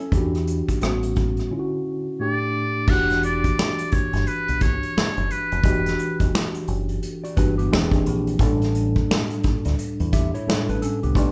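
A trumpet with a metal mute carries the melody from 2.2 to 6.3 seconds, its tone buzzy, thin and breathy with a soft attack, a whispered, intimate jazz voice sitting up front. Beneath it, this sultry, introspective neo-soul R&B cut from a longer piece moves at 87 BPM in 4/4 with a swung sixteenth-note feel in E dorian, built on a mellow tine electric piano that plays clean, warm and up front throughout. An acoustic drum kit played with bundle sticks adds a tight kick, medium-tuned snare, rim clicks, hi-hat, crash and finger snaps, while a deep fingered electric bass, round and punchy, enters at 0.1 seconds. A dark, clean electric guitar adds a brief second line at the very start and returns at 7.2 seconds. The chords pass through Em9, A13 and Dmaj9 before a break, then settle back on Em9 and later touch E7alt and A7sus4, all captured as a band playing live in one room with light reverb.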